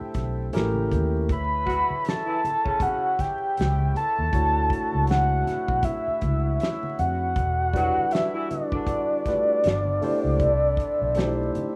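Smooth and sensual, this slow neo-soul R&B excerpt in D major sits at 79 BPM with a swung sixteenth feel, built on a barky, lightly overdriven tine electric piano, a reedy accordion in the background, a dark, foam-muted fingered electric bass up front, and an acoustic soul drum kit with a fat snare and tight kick. Very quiet, low-tuned congas add soft-handed texture, while a round, detuned synth lead with chorus, vibrato and a sub octave carries the melody from 1.3 seconds. Tight, vintage jazz-style horn stabs arrive at 1.7 and again at 7.7 seconds over chords moving from Dmaj9 through Em9 and G9, all in a rough home-demo mix with vinyl crackle and small room ambience.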